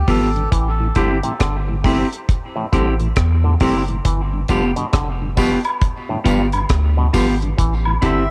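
Dub reggae at 68 BPM in A minor with a swung sixteenth-note feel, spacious and deep, built on an up-front round sub bass with tube saturation and a dry drum kit of tight kick, hi-hat and rim click, while a clean picked electric guitar and a hollow, nasal auto-wah clav with overdrive carry dub echo and cassette-tape coloring, a dark tonewheel organ turns on a slow rotary speaker in the background, a breathy melodica appears only briefly at the start and again at 8.1 seconds, and distant tambourine and woodblock join at 4.5 seconds over a G7 to Am7 vamp.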